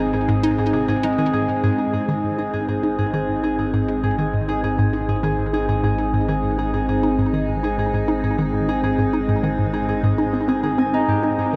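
A straight, steady 4/4 pulse carries this luminous, expansive excerpt of ambient, sequencer-driven space music. An up-front, evolving wavetable pad holds detuned, morphing chords with chorus and its own reverb, while a ringing, fingerpicked concert harp spins tape-echoed arpeggios. A hollow, bouncy square-wave pluck repeats a chorused, echoing riff, a round, deep analog bass anchors the low end, and a filter sweep on the synth arpeggio runs from 1.6 seconds onward, all set in a vast, echoing space.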